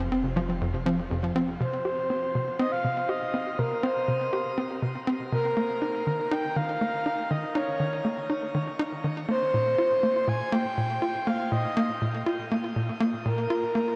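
A breathy, flute-like synth lead carries the melody from 1.6 seconds over a tight, punchy sequencer bass riff in this cosmic, expansive excerpt of ambient space music at 121 BPM, where a warbly, lo-fi pluck arpeggio and a round sine sub bass sound only briefly at the opening before the chords drift from Cm through Ebsus2 to Bbsus2 in a dark production bathed in shimmering reverb.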